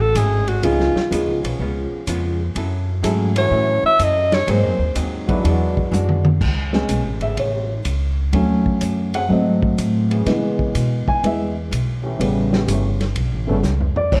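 A breathy alto saxophone opens this energetic big band swing excerpt, carrying the melody up front with a soft attack, light vibrato and scooped notes over a dark, clean archtop guitar, sustained trombone-section chords with vibrato in the background, and a woody, growly pizzicato upright bass. A vintage drum kit joins almost at once, its muffled, lo-fi sound built on a punchy kick, a medium-tuned snare, hi-hat, ride, crash and toms with a rolled-off top. A baby grand piano also arrives early, intimate and natural, with its action noise audible. After the saxophone stops at 5.0 seconds, a drum fill leads into a piano solo from 6.4 seconds over rich jazz chords, while the trombones hold their chords until 13.6 seconds. A moderate recital-hall reverb and a warm, dark production give the swinging performance a cosy, vintage glow.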